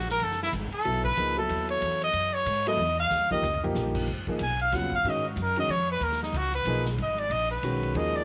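A clear, punchy trumpet opens this searching, hypnotic modal jazz excerpt at once, soloing up front alongside a woody, thumpy pizzicato upright bass with gut strings. The solo moves at a brisk 186 BPM in a swinging 3/4, its forceful lines colored by light vibrato and scooped notes, with a roomy, slightly distant sheen. A warm concert grand piano joins at 0.8 s as accompaniment, its intimate tone carrying audible action noise, deep bass and long sustain. A swinging big-band drum kit, recorded naturally in a big room with a medium-tuned snare and boomy kick, keeps time on ride, hi-hat and crash, and plays a short fill at 3.4 s. The harmony moves from Gbm9 to Eb7 before settling into G# dorian on G#m9 at 4.1 s for a second pass of the same section. Light reverb gives the small group a small-room ambience.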